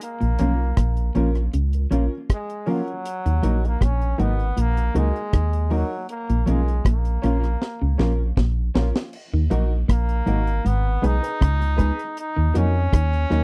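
A distant, brilliant trombone opens this serious, laid-back roots reggae cut alongside a dry, dark drum kit with a high-tuned snare and tight kick, and a round, deep sub bass sits up front from 0.2 seconds while a slightly broken-up guitar riff murmurs in the background. A clean, compressed electric guitar with warbly pitch drift and tape echo joins at 0.4 seconds with a worn, woody upright piano playing stabs, and the trombone's scooped melody carries its own tape echo. In Eb minor at 79 BPM, the close, 1970s-style studio sound moves to a drum fill ending at 9.1 seconds, where the second section begins.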